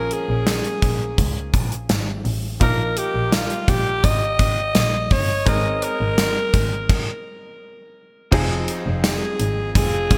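A straight 4/4 pulse at 84 BPM drives this urgent, dramatic 1980s-style pop piece in Bb dorian, where a raspy, gritty alto saxophone with delay sings the lead up front over brilliant, short-sustained grand piano, a rich bowed double bass and a bright gated drum kit with bright cymbals, tight kick and a very quiet, jingly tambourine. The harmony moves through Bbm7, Ebsus2/Bb and Abadd9, then a stop at 6.9 s gives way at 8.3 s to Fm7 as an overdriven semi-hollow guitar with subtle chorus enters in the background. A moderate plate reverb and polished digital production give the recording a glossy sheen.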